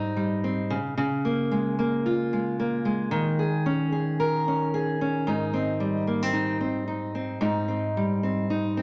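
A dark, up-front fingerpicked steel-string acoustic guitar plays alone through this laid-back, sunny indie pop excerpt at 112 BPM in Ab major with a gentle 16th-note swing, its warbly pitch drift set in a wet large-studio reverb as it moves through Abmaj7, Db6 and Eb7sus4 before returning to Abmaj7 at 5.3 seconds for a new section that runs to 8.8 seconds.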